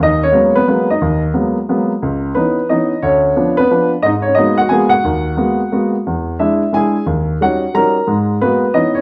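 A natural, up-front baby grand piano plays alone through this moody, swinging 9-second jazz waltz fragment in G# minor at 178 BPM, moving through G#m9, C#m9, E7 and D#7#9 chords in lightly swung 3/4 time, with a light reverb giving the room a gentle glow.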